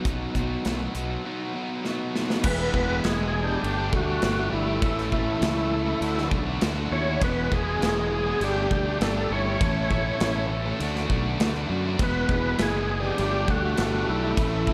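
A big arena sound fills this classic rock excerpt, with a lush hall reverb giving the band a sunny, confident sweep in a straight 4/4. Two picked guitars churn out the riff in the background: one bright and distorted, the other sludgy and overdriven with a slapback echo. Up front, a growly fuzz bass played with the fingers anchors the low end, while an acoustic rock kit with bright cymbals, a medium-tuned snare and a boomy kick drives things along and plays a fill from 1.8 seconds. At 2.4 seconds a gritty tonewheel organ takes the melody, thick with key click, chorus vibrato and a slow rotary speaker. A dark octave-fuzz lead guitar joins at 2.5 seconds with a second line tucked behind it, as the harmony cycles through E, Gsus2, A and D.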